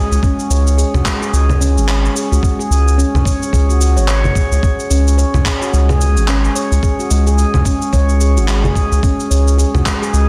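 A round, deep analog bass sits up front with gritty, sampler-style shaker, congas and handclaps to open this earthy, meditative organic downtempo excerpt with a swung sixteenth feel, joined almost at once by a thumpy, compressed electronic kick and an up-front, ringing stainless-steel handpan playing arpeggios through a filter sweep and tape echo, while both drum parts carry the sound of a large room, all set in light reverb and digital ambience under a dense, heavily limited modern master.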